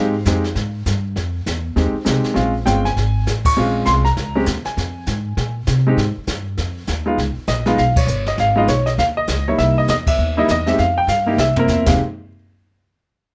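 A moderate studio reverb gives this cool, smoky jazz piano trio excerpt a natural studio room sound, swinging briskly at 199 BPM in 4/4 in F minor. An up-front concert grand, clear and slightly worn with deep bass, carries the melody over minor-ninth harmony that moves through Db7 and a tense C7#9. A woody, thumpy pizzicato upright bass with steel strings anchors the low end, while a brushed drum kit with dark cymbals and a boomy kick joins the ensemble accents and plays a fill from 11.1 to 11.7 seconds.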